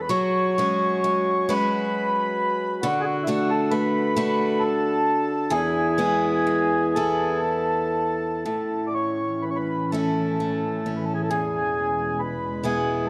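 A mellow, reedy accordion carries a wistful Celtic slow air in 6/8, sung out up front over a picked steel-string acoustic guitar with a bright, boxy parlour tone, the pair moving freely in rubato at around 40-46 BPM in A major. At 9.0 s an ethereal, warbling pad with a detuned, vintage character and ensemble chorus slips in beneath them with sustained chords, deepening the pastoral mood. The short section from a longer piece sits in a dark production with a moderate 2.0-second scoring-stage reverb.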